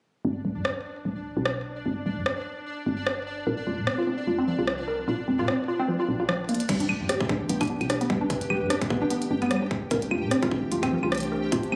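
A glitchy drum kit of clicky hats, claves, rim clicks and crash cymbal sets a swung, intricate groove in this IDM fragment cut from a longer piece, sitting up front with a tape-warm, produced edge, studio reverb and delay. Underneath, a woody FM bass plays round, soft notes with a fast attack that decays into darkness, while a bright, pulsing gated texture hums in tempo-synced unison, detuned and pumping against the beat through chorus and its own reverb. At 3.5 seconds a warbly, dusty pluck comes forward with mellow, detuned arpeggios, its filter snap colored by chorus and dub echo as the harmony moves from G to Bbsus2. A drum fill at 6.5 seconds leads into the second section at 6.7 seconds, where a tight electronic kick joins and a nostalgic, lo-fi pad settles into the background with slow-blooming sustained chords over Gadd9 and Bbsus2. The whole piece sounds as if caught on a phone in a room with club-like reverb, a light ambience that keeps the mood glitchy and intricate.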